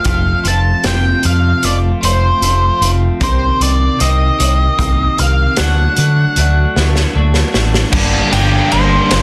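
A slow 6/8 pulse at 51 BPM, played half time through the opening section, drives this dark, angsty quiet-loud alternative rock excerpt in G minor, led by an up-front raw garage drum kit, boomy and saturated in a pumping small room, and a round, punchy overdriven fingered bass. A bright, twangy twelve-string electric guitar plays clean arpeggios over F, Cm7 and D, while an octave-fuzz lead guitar carries the melody with slapback echo, until a drum fill from 6.8 seconds leads at 7.9 seconds into a new section on Gm. There the twelve-string stops, the lead turns to a solo, and three guitars enter in the background with riffs: one crunchy, one overdriven, and one double-tracked and compressed with distortion.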